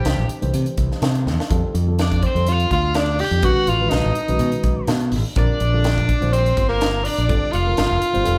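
A soloing tenor saxophone sits up front with a present, jazz-style voice, carrying the melody in its lower-middle register through this soaring, funky stretch of electric jazz fusion cut from a longer piece. Beneath it, a punchy fingered electric bass, the loudest part in the mix, comes in with a direct, modern edge alongside a crisp fusion drum kit whose high-tuned snare, punchy kick and hi-hat breathe in a pumping studio room, with a drum fill at 1.3 seconds. A cranked stack guitar, overdriven and picked, adds a second line above the sax, sitting further back and treated with spring reverb. A worn, slightly out-of-tune tine electric piano supplies clean, warm accompaniment through a combo amp. The band plays live in one room with a moderate large-studio reverb, moving over a 4/4 swung sixteenth-note feel through Cadd9, F6, B9, Bb6 and Gm7 across the full 8.4 seconds.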